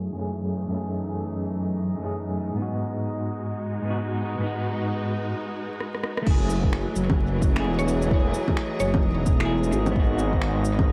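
Swung 4/4 at 130 BPM, this wistful, melancholic future garage excerpt in F# dorian opens with an up-front, clean semi-hollow electric guitar under tremolo and tape echo and lush, bowed symphonic strings with vintage 12-bit grit, both filter-swept and pumping, while a glassy, drifting texture floats behind over F#m9 and G#m7; after a break and an organic drum-kit fill of bongos, snaps, rim clicks and shaker, a deep electronic kick and a menacing, saturated detuned saw bass arrive at 6.3 s, and a woody, round mallet-like pluck touches C#5 from 7.8 s, all inside an echo-heavy mix with vinyl crackle.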